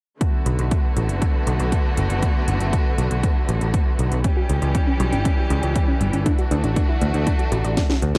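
Bittersweet and nostalgic, this italo disco excerpt in B minor moves at 119 BPM in a straight 4/4, with a punchy, overdriven electronic kick and a house kit of cracking snare and metallic hats underpinning a growly picked electric bass, while a clear, focused studio string section holds sustained chords over Bm7, C#dim and Dadd9, a warbling, lo-fi sawtooth pluck with chorus and tape echo adds arpeggios in the background from 4.2 seconds, and a drum fill closes the dry, close 1970s-style recording at 7.8 seconds.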